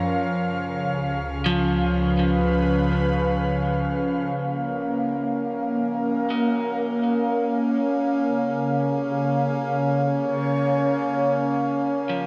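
Ambient and luminous, this fragment of a longer piece floats an airy, breathy, detuned pad with chorus up front over a reedy, boxy harmonium drone and a deep, ominous rumbling bass drone that stops at 4.3 seconds, while a slightly broken-up, compressed electric guitar with delay enters at 1.5 seconds playing picked arpeggios, and from 4.4 seconds a filter sweep colours the pad and the guitar fades in, all inside a huge, wet reverb as the chords move from C#7 to F#maj7 to C#.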